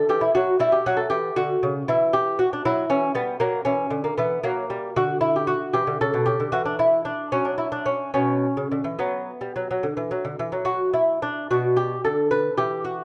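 A solo lute carries this baroque-style dance in B minor, its fingerpicked nylon and double strings, some doubled at the octave, sounding delicate and close up front across its span from B2 to B4. The mood is grave yet flowing, moving in 12/8 at roughly 70-80 dotted-quarter beats per minute, with a rubato feel that lets the phrases breathe. The harmony opens on a rootless C#dim, passes through F#7 over E and Bm over D, pauses briefly on an unharmonized moment, and settles onto B minor at 8.2 seconds. A new section begins at 11.5 seconds before this 13-second extract, cut from a longer piece, comes to a stop. The production is dark and warm, and a moderate recital-hall reverb with a 1.2-second decay gives the instrument a natural sense of space.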